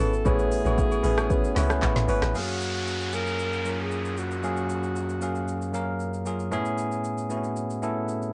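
A relaxed, straight 4/4 amapiano groove at 115 BPM in F# major opens on a drop, with an electronic afro-pop kit of deep kick, woody snare, crisp hats, rim click, claps, shaker and toms carrying 12-bit sampler grit, while a round, up-front log drum bass and background agogo bells and woodblock play only until about 2.3 seconds, alongside hollow, nasal organ stabs with chorus and analog delay. A bell-like tine electric piano rings clean and bright across the whole 8.3 seconds, and a breathy alto saxophone with light vibrato and analog delay sings a smooth pop melody until 6.3 seconds. From 2.3 seconds an electronic downlifter runs until 6.5 seconds as the harmony moves from Amaj9 to F#maj9 and back, all in a dry, gritty cassette-tape sound cut from a longer piece.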